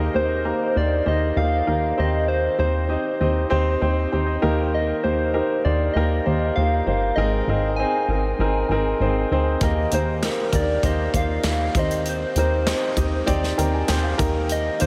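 Warm and anthemic, this piano-driven pop piece moves at a steady, straight pulse, with an up-front grand piano laying down smooth, vintage-toned chords over a punchy, plucky analog bass, while a round, gentle, keys-like synth lead with chorus carries the melody from 0.2 seconds. The piano adds brief fills along the way. A modern studio kit of punchy kick, snare, hi-hat and handclaps joins at 9.6 seconds, and a huge ambient reverb soaks the mix in a dreamy haze.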